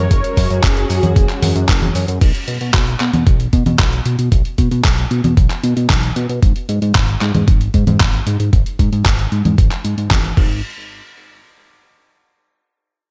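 This bittersweet, nostalgic slice of Italo disco opens on an F#add9 chord, with a mellow synth brass melody that sounds round, brassy and detuned, carrying chorus, delay and vibrato. Behind it, a vintage string machine holds swirling, bright sustained chords, softened by a slow attack and long release and colored by ensemble chorus and phaser. The brass drops out at 1.7 seconds and the strings end at 2.2 seconds, leaving a fat, thick analog bass up front alongside the drums, its sawtooth and square tones pushed through tube saturation and shaped by a filter sweep and moving notch. From 0.1 seconds, a straight 4/4 groove at 114 BPM comes from a gritty, sampler-style drum kit of cabasa, congas, crash cymbal, handclaps and hi-hat, compressed and overdriven with gated reverb, plus a thumpy electronic kick that leads the mix. The drums re-recorded in a small room have a dusty character, while a digital ambience wraps the whole mix, and the bass carries on until 10.6 seconds in this fragment of a longer piece.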